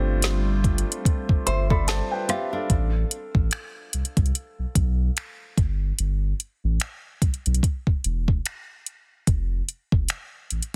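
A dense, heavily limited mix in a small room carries this moody, late-night contemporary R&B cut with a swung sixteenth-note feel, where an up-front saturated sub bass and a produced electronic kit with a woody, softly clipped snare and metallic hats anchor an intimate grand piano with audible action noise, a hollow, flute-like chorused pad that stops at 2.7 seconds, and a dark, fingerpicked nylon-string guitar whose delayed arpeggios enter at 1.5 seconds.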